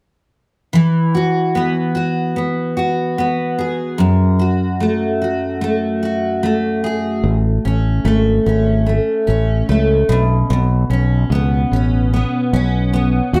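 A bright, full-bodied picked steel-string acoustic guitar, double-tracked and up front, carries this carefree, heartfelt pop excerpt with a gentle swing through Eadd9, F#madd9, A and Bsus2 in moderate studio reverb, joined at 7.2 seconds by a punchy, direct fretless electric bass.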